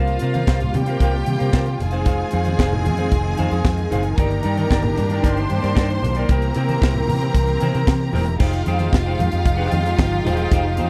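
Lush bowed strings, one close section carrying a high second line and a distant one holding sustained chords, open this driving, danceable disco excerpt together with a dark, clean, picked electric guitar and a round, foam-muted fingered bass, joined at 0.1 seconds by an up-front funk kit with a high-tuned snare and tight kick plus very quiet, low-tuned congas, all captured in a dry 1970s-style studio sound.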